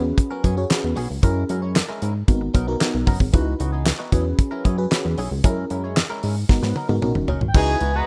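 Funky and slick, this excerpt of early-eighties boogie funk rides a straight 4/4 groove through a rich chord cycle of ninths and elevenths such as E69, F#9, G#m9 and C#m11. A damped 70s drum kit sits up front with a fat snare, tight kick, handclaps, hi-hat, crash and toms, its top rolled off and dry, and it takes a fill from 6.5 to 7.5 seconds. Beneath it a chorused synth bass, glossy and dark with a detuned, filter-plucked edge, anchors the low end, while a lush FM electric piano with a soft pad layer spreads dreamy, chorused chords and a bright, twangy direct-recorded clean guitar picks a compressed riff through analog chorus. Just as the section turns at 7.5 seconds, a smooth sawtooth lead with portamento and vibrato arrives alongside a punchy horn section, and an airy small flute group joins at 7.6 seconds with tongued, sustained chords in the background. The whole excerpt has the rough feel of a home demo mix in a small room.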